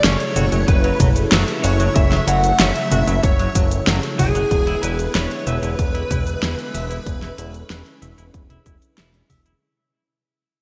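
Bright, 1980s-style digital production bathed in a lush hall reverb frames this moody, nostalgic synthwave fragment at 94 BPM, which moves from F#m7 to E7 and begins fading out at 2.8 seconds. An overdriven, lo-fi lead guitar through a small cranked amp carries the melody with digital delay, shadowed in the background by a shimmering string machine of violins, while a swirling, phased analog pad with sidechain pumping holds sustained chords and a clean, twangy electric guitar picks a riff. Underneath, a fat, nasal analog bass sits up front beside a pop drum kit with gated reverb, a fat snare and bright hats, joined at 0.7 seconds by a punchy electronic kick.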